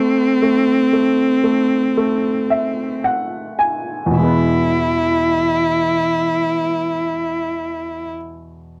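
A heartfelt, tender pop excerpt at a slow 54-60 BPM in E major, pairing a rich, smooth bowed cello melody from a single player with vibrato and a clear, woody upright piano accompaniment whose notes have short sustain. The opening slows down as the piano plays a fill from 2.0 seconds, and the harmony settles on E at 4.1 seconds; the cello stops at 8.1 seconds while the piano continues briefly. Both instruments sit up front, with the cello close, in a dry 1970s-style studio sound with light reverb.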